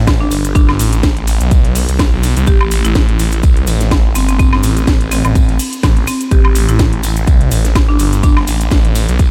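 A thick, swirling detuned saw bass with phaser, tube saturation and sidechain pumping sits up front from 0.0 seconds, driving this bouncy, aggressive bass house clip at 125 BPM in A minor with a 16th-note swing. A punchy electronic kick leads the drums alongside an overdriven house kit with a cracking snare, metallic hats, ride and woodblock, while a dark, dry soul kit with tambourine and a grainy cabasa sit very quiet underneath. From 0.2 seconds a bright, woody marimba played with hard mallets adds a dry, percussive melody through an analog delay, all set in a studio reverb.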